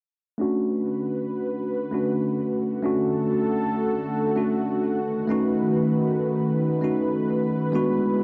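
The recording sits in a wet echo chamber with a 1.6-second reverb, making for an echo-heavy mix. This chillout excerpt moves at 98 BPM in 4/4 with a light swing on the 16ths, set in B dorian and tuned to A4 = 439 Hz, and its mood is wistful and warm. A bell-like tine electric piano carries the accompaniment from 0.4 to 8.2 seconds, clean, direct and up front, run through a tape echo and a low-pass filter that sweeps across the whole passage. Alongside it, a lush unison pad holds sustained chords over the same span, its detuned sawtooth voices thick and warbling with a vintage chorus, a slow attack and a long release. The harmony rests on Bm7 before turning to B7 at 5.0 seconds.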